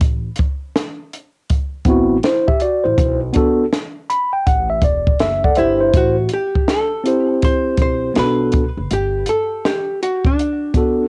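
A swung 81 BPM groove in 4/4 opens this smoky, nocturnal jazz-hop excerpt in A dorian, with a compact cocktail kit of punchy kick, high-tuned snare and hi-hat sitting up front over a woody, growly pizzicato upright bass. A mellow tine electric piano tinged with cassette tape enters at 1.9 s, adds a fill and moves through chords such as Amadd9, Bm7 and Gmaj9. At 5.6 s a clean, hollow-body archtop guitar, picked and also tape-colored, takes the melody just before a new section begins at 5.9 s, all within a light reverb and a homespun cassette recording.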